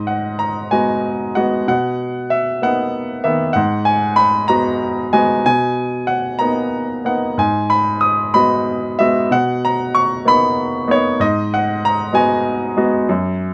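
A clear baby grand piano carries this lyrical classical solo from its opening moment, sitting up front in a melancholic, wistful mood. The playing moves in 6/8 at about 63 BPM counted in dotted quarters, with a free rubato that lets the phrases breathe, and it is set in G# minor, tuned to A4 = 443 Hz. Across its span from F#2 to D#6, the harmony sways between G#m7 and Bmaj7, returning to G#m7 at 11.2 seconds. Close, detailed microphones catch the instrument with a light reverb around it. This 13.5-second passage is cut from a longer piece and holds a single unbroken section.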